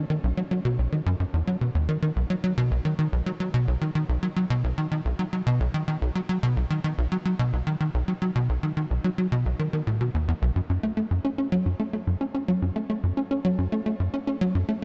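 The recording sits in a light reverb and digital ambience, with nothing above 8.0 kHz. This ambient piece, cut from a longer work, moves at 109 BPM in a straight 4/4 and feels expansive and hypnotic. A tight sequencer bass plays alone from 0.0 to 14.8 seconds, ranging from B1 up to C#4 and sitting up front in the mix. Its tone blends sawtooth, square and sine waves, wave-folded and saturated, with a punchy filter pluck, fast attack, decaying notes and a moving notch that keep it driving. Lush chorus and tape echo thicken the bass, and at 10.7 seconds the music settles into F# minor, tuned to A4 = 442 Hz.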